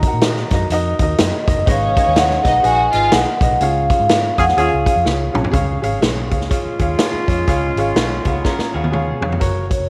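Bathed in a roomy echo-chamber reverb, this joyful, uptempo 1960s-style soul piece swings at 124 BPM, with a mellow, ringing vibraphone played with soft mallets carrying the melody over woody upright piano, a dark, foam-muted electric bass and a punchy, up-front big-band drum kit. A lush, distant string section adds a bowed second line at 1.7 seconds, and a smooth jazz-style horn section takes over the second line from 4.4 seconds, in the middle of a band accent and just ahead of a drum fill. A bright, twangy, slightly broken-up electric guitar riff slips in at 8.3 seconds under another drum fill.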